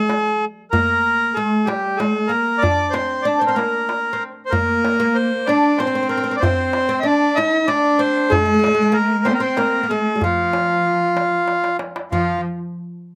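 Dry, with an open-air feel, this short cut from a stately, passionate Arabic maqam ensemble piece in F maqam rast moves at 63 BPM in a straight 6/8, with a reedy, up-front accordion carrying the melody over a woody, double-strung fretless oud played with a plectrum, a crisp, deep metal-shelled darbuka, and a smooth, rich bowed cello with vibrato that joins the oud's second line at 4.5 seconds, before the darbuka plays a fill at 11.5 seconds.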